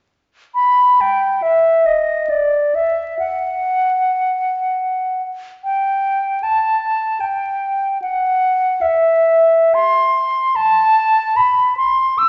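Classical music for unaccompanied concert flute, this short excerpt from a longer piece carries a nostalgic, serene mood. It moves in a free, expressive 3/4 with rubato, the tempo drifting between 62 and 77 BPM. The flute enters at 0.5 seconds and plays alone until 12.3 seconds, ranging from D5 to E6 with a pure, straight tone and tongued articulation. It sits up front in the sound, surrounded by a wet recital hall reverb with a 1.5-second decay. A layer of vinyl crackle and a dull top end, with nothing above 7.6 kHz, give the recording an aged, faded quality.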